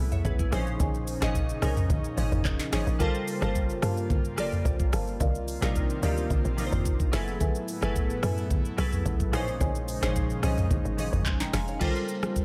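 This amapiano excerpt has a hypnotic, deep mood and sits inside a drop built on minor eleventh chords such as F#m11, Bbm11, Gm11 and Cm11. An up-front electronic drum kit drives the straight 4/4 groove with a knocking kick, sharp snare, smooth hi-hats, handclaps, rim clicks, shaker, toms and crash. Beneath it, a tight, punchy FM log drum bass with a noise layer strikes with fast attack and a decaying tail until 11.8 seconds. Glassy digital keys carry the accompaniment, bright and chorused with a filter sweep, over an airy, breathy pad whose slow attack and long release hold mellow sustained chords, its detuned sawtooth and triangle tones coloured by ring modulation. From 0.5 seconds a woody marimba played with medium mallets adds delayed stabs in the background, and very quiet, damped congas struck with soft hands sit beneath the kit, all set within a digital ambience.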